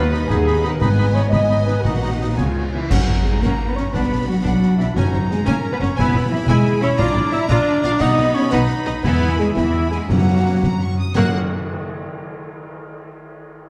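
A lilting 6/8 pulse with a straight feel drives this heroic, triumphant passage of adventure film scoring, cut from a longer cue. A clear, focused violin section carries the melody up high, while a second, lush violin section, clarinet, flute and, briefly at the opening until 2.8 seconds, an oboe weave secondary lines behind it. Violas supply intense accompaniment, the French horn section holds warm, smooth chords, and cellos and double basses anchor a rich, expressive low end. Snare drum, bass drum and bright clash cymbals keep time in the background, joined by dark cymbal swells, tam-tam and bass drum from 0.8 seconds and again at 11.1 seconds, with timpani entering at 2.9 seconds as the full orchestra hits a shared accent. The harmony travels through minor and added-ninth colors before landing on a bright, confident major cadence, all set in a dark, moderately reverberant scoring-stage sound with a faint mains hum beneath.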